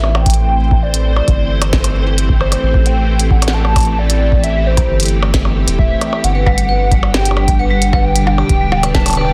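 Glitchy and eerie, this IDM excerpt moves at 133 BPM in A dorian, shifting from Am7 to G at 6.2 seconds. A warbling, nostalgic lead with analog chorus and tape echo carries the melody over silky string-machine chords, a round, nasal analog bass sitting up front, a deep electronic kick, and a glitchy kit of clicky hats, percussion blips and a tiny snare. At 6.4 seconds a bright, metallic vibraphone struck with hard mallets adds ringing arpeggios through digital delay, all inside light reverb and a dense, heavily limited master.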